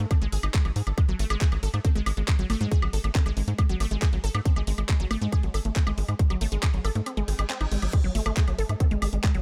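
Alien and driving, this psychedelic trance excerpt rides a tight, up-front electronic kick and a dark, punchy sequencer bass built from sawtooth and square waves with a fast-attack filter pluck. Above them, a lush, detuned unison pluck riff with a noise layer and moving notch pumps against the sidechain and trails into dub echo, while a garage drum kit adds bright hats, handclaps, woodblock and crash cymbal in digital ambience. The kick drops out at 7.1 seconds, a reverse cymbal sweeps in the background from 7.3 seconds, and the kick returns by 7.9 seconds.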